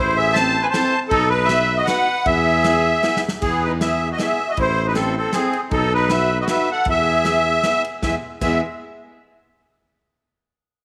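A lilting three-four metre with a swung eighth-note feel sets this jolly, festive alpine dance-band passage in motion, cut from a longer piece. The reedy musette accordion sits up front with the melody, its shimmering tuning carrying the tune, while a warm, distant trumpet plays a roomy second line in classical style beneath it. A mellow tuba with a smooth top anchors the bass, and from 0.4 seconds a bright, full-bodied steel-string acoustic guitar with fresh strings adds picked accompaniment alongside an airy, polished country drum kit with a punchy kick, a medium-tuned snare, and ride and crash cymbals. A drum fill at 3.0 seconds leads into a second section where the chords cycle from A minor through B to E, and a brief closing section begins at 8.0 seconds. A lush echo-chamber reverb gives the band a spacious studio glow.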